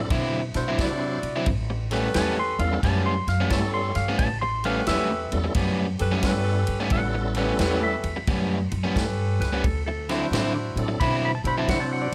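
A bright, overdriven electric guitar sits up front with a compressed, picked riff, driving this rollicking, swaggering electric blues shuffle at 88 BPM in 4/4 with a swung eighth-note feel. A clean, dark lap steel guitar carries a slide solo as the second line, while a tonewheel organ fills out the accompaniment with a full, lightly overdriven tone, chorus vibrato and a slow rotary speaker. An upright bass plucked on steel strings gives a woody, thumpy low end, and a vintage drum kit with punchy kick, medium-tuned snare, ride cymbal and a rolled-off top keeps a natural studio-room sound. A tight, close-miked saxophone section in jazz style joins at 0.5 seconds with stabs. The harmony moves from D9 to A9 at 1.5 seconds and back to D9 at 9.6 seconds, all under light reverb in this short cut from a longer piece.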